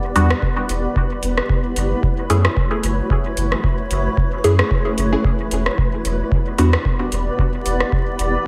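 A nocturnal, hypnotic dub techno excerpt built on a deep, round sine sub bass and a booming analog drum machine with metallic hats and rim clicks, fed through dub echo and joined by an up-front electronic kick re-recorded in a large room. Muted, detuned sawtooth chord stabs with a filter pluck pass through phaser and dub echo until 6.8 s, while a cloudy, wave-folded granular pad and a flickering, grainy texture in the background drift on their own built-in reverb. The chords move from Em7 to F#m7 and back, with sidechain pumping on the pad, texture, stabs and bass, all over light reverb, a digital ambience and a bed of vinyl crackle.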